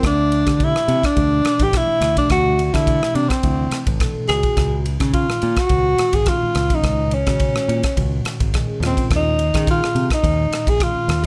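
From the first second, a breathy, up-front tenor saxophone sings a mellow jazz melody with vibrato, soft attacks and scooped notes over phaser-tinged, clean tine electric piano in the background, a bright fingered electric bass and an up-front, polished studio drum kit of punchy kick, bright ride and rim clicks, as this bright, funky electric jazz fusion excerpt moves at 106 BPM in a straight 4/4 through D9sus4, Dbsus24 and Eb9sus4 chords, tuned to A4 = 437 Hz and set in light reverb.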